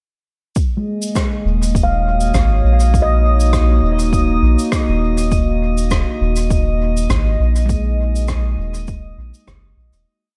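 Ambient dub in Eb minor at 101 BPM with a light swing, deep and hazy, where an overdriven electronic kick and a distant, roomy cabasa and rim click with dub echo set a sparse groove from 0.6 seconds, a ringing, mellow handpan plays two slow loops of unequal length drifting against each other through a filter sweep and tape echo, a warbling, detuned tape-like pad with chorus and reverb holds dark, slowly shifting chords opening on Ebm7, a glassy sine-tone texture sustains a high Eb5, and a round, up-front sub bass carries a dub-style line beneath through the fade-out that begins at 6.9 seconds.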